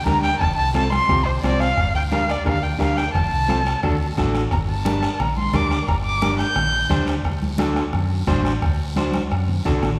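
Fiery and danceable, this cumbia excerpt from a longer piece moves at 175 BPM in G minor, turning to G harmonic minor at 4.5 s. An intimate, up-front erhu carries the melody with vibrato, portamento and an airy bow until 7.0 s, over a slightly broken-up electric guitar accompaniment, a dark, round fingered electric bass, and percussion of vintage soft-beater bombo, background congas with a thick-skinned, high-tuned sound, and a raspy, distant guiro. The whole sits in a wet, hall-like reverb, and a drum fill closes the final second from 9.0 s.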